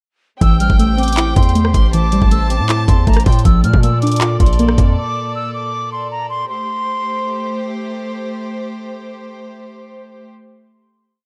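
Dark, melancholic half-time trap, built on a looping, airy flute melody with tape echo, a sparse counter-melody from a gut-toned chamber violin section, and a soft, round pluck arpeggio in eighths with chorus, each repeated like a sampled loop over a sustained, bowed string pad. Up front, a knocking trap kit with bright hats, fast hi-hat rolls, handclaps and rim clicks drives alongside a heavy, distorted 808 bass whose long sub notes follow the kick with pitch slides. The drums and bass stop by 5.0 seconds, the flute ends at 7.6 seconds, and the string section holds the final chord until 10.3 seconds.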